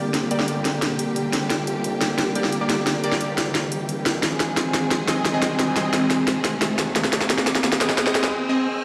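Awash in lush hall reverb and the echo of a bare stone room, this dark, tense fragment of technical drum and bass builds as an up-front, overdriven electronic kit plays a fill of cracking snare and bright hats, bold orchestra-hit-like synth stabs carrying their own reverb and digital delay punch over bowed, vibrato-rich symphonic strings, a very quiet, swirling phased saw bass and a deep, warbling ambient pad sit quietly beneath, and a background riser runs from 0.2 s to 8.8 s, carrying on through a brief break at 8.3 s.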